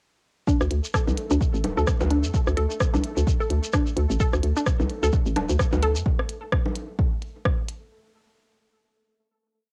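Recorded at home on cassette with little reverb, this short, complete minimal techno piece feels clinical and cool, running at 129 BPM in 4/4 with a swing on the sixteenths and resting on a D5 chord from 0.5 seconds. A punchy analog kick sits up front in a steady four-on-the-floor, joined by a programmed click kit of closed hats and a rim backbeat, and a hollow, bouncy FM bass that rolls through a staccato groove with sidechain pumping. A squelchy, resonant filter pluck carries the riff as a 7-step loop drifting against the bar, colored by analog chorus, delay and tape grit. Behind it, a pulsing gated pad holds a high note with a slow attack, chorus and its own reverb, while a grainy shekere adds close, dry hand-played sixteenths. Low bongo clicks and blips arrive at 1.1 seconds in a cross rhythm with tape echo, and the click kit is the last part still sounding at 7.8 seconds.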